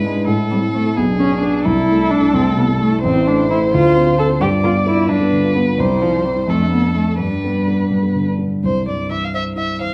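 Lively and spirited, this quick classical-period piano trio movement in 6/8 at 86 BPM (dotted quarters) moves from A minor to C major at 3.0 seconds, with a veiled, distant muted violin carrying the melody in vibrato, a smooth-topped muted cello tracing a second line, and an up-front, mellow dark grand piano supplying accompaniment, all set in a moderate recital hall reverb within a dark production.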